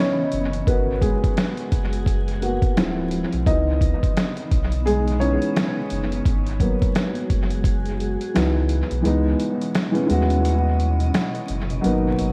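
A felt-muted upright piano, boxy and intimate with audible action noise and dub echo, plays a solo through the first 9.0 seconds of this hazy, melancholic lo-fi hip hop excerpt at 86 BPM in C# dorian, over a round sine sub bass, a muffled, pitched-down sampler-style drum kit of finger snaps, hi-hat, snare and a thumpy kick that is muted from 9.0 seconds, and a blurred, detuned granular cloud pad sitting in the background, with vinyl crackle throughout an echo-heavy mix.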